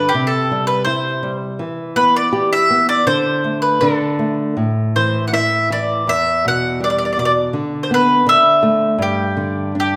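Fado at 81 BPM in 2/4, played with a rubato feel and a mournful, longing mood, this short passage is cut from a longer piece. A bright, woody mandolin carries the melody between G4 and F#5, its picked double strings sitting up front. Beneath it, a dark, small-sounding nylon-string guitar fingerpicks the accompaniment from E2 to G4, also close in the mix, with audible finger squeak. Both instruments play throughout the 10 seconds, bathed in a wet recital hall reverb with a 1.5-second decay. The harmony moves from C through Em, D5 and A5, returns to Em, then passes through Bm/D and Dsus2 before settling on G5 at 9.0 seconds.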